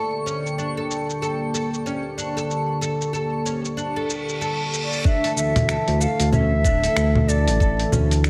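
Warm and hypnotic, this organic downtempo excerpt moves at 94 BPM in 4/4 with a 16th-note swing. A detuned, chorused analog pad holds sustained chords with sidechain pumping under woody, double-stringed oud arpeggios with delay, while a twinkling granular shimmer sits in the background and a dusty, gritty soul drum kit of congas, finger snaps, hi-hat and shaker enters at 0.3 seconds. After a reverse cymbal rises at 4.0 seconds, an airy, reedy ney carries the melody through digital delay, joined by an up-front overdriven kick and a smooth, tube-saturated synth bass as the harmony shifts from Gm/D to Dsus2 at 5.1 seconds, all in light digital ambience.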